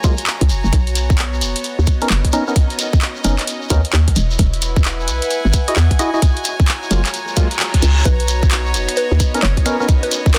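A dense, heavily limited modern mix with light reverb carries this sunny, soulful two-step garage excerpt, its swung sixteenths giving the groove a loping bounce. Up front, a tight, layered electronic kick and a hollow, knocking FM bass with a punchy, fast attack anchor the low end. A tape-warm analog drum machine supplies finger snaps, handclaps and hi-hat, while a grainy shekere sits in the background. Mellow organ-like stabs, treated with analog chorus and tape echo, outline lush chords moving from F#maj9 through Bmaj9 and Emaj9, alongside a rich, floating chamber string section bowed sul tasto that pumps under sidechain compression. An electronic reverse cymbal sweeps in at 7.3 seconds, a detuned square-wave pluck with chorus and tape echo enters quietly behind the mix at 8.1 seconds, and an ethereal, airy pad joins very softly at 8.6 seconds.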